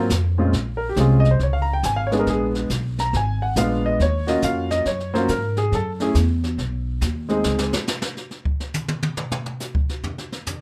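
An intimate concert grand piano carries the melody up front, its deep bass and audible action noise giving this smoky, cool jazz trio fragment a close, natural feel as it swings at 139 BPM in Bb minor over chords like Bbm9, Bb7b9 and Ebm9. A woody pizzicato upright bass with steel strings sits beside it, while a small-room brush kit with a medium-tuned snare and boomy kick plays quietly underneath in light reverb. Piano and bass stop at 7.7 seconds, leaving the drums alone until the cut at 10.6 seconds.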